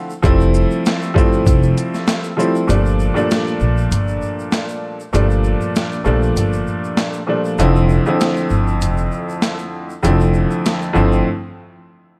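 Gritty and reflective, this boom-bap hip-hop excerpt rides a dusty, sampler-style drum kit whose thumpy kick, medium-tuned snare, hi-hat and shaker sound overdriven, compressed and up front. A slightly detuned, vintage upright piano with long sustain moves from Fmaj7 to Gm7 at 2.7 seconds, where a break begins, and on to Dm7/F at 7.6 seconds. Meanwhile a woody pizzicato upright bass holds the low end, a grainy tube shaker sits mellow in the background, and a small room ambience surrounds the parts.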